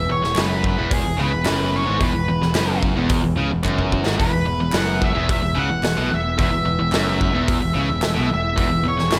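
An octave-fuzz lead guitar, dark and distorted, sits up front and carries the melody from G#4 to F#5 with a plate reverb around it in this driving, confident classic rock excerpt in E major at 110 BPM in a straight 4/4. Beneath it, two background electric guitars play the riff in the same low register, one biting and overdriven, the other tight, bright and distorted. A picked electric bass with a warm, direct tone holds the low end, while a full-bodied jumbo steel-string acoustic guitar, picked with audible finger squeak, fills in the accompaniment from the background. A big rock drum kit enters at 0.2 seconds, natural in a big room, with a medium-tuned snare, hi-hat and punchy kick, and it plays a fill from 3.6 to 4.2 seconds. A very quiet group handclap, crisp and small-roomed, joins at 0.4 seconds, and the whole section sits in light reverb, stopping at 9.2 seconds as a cut from a longer piece.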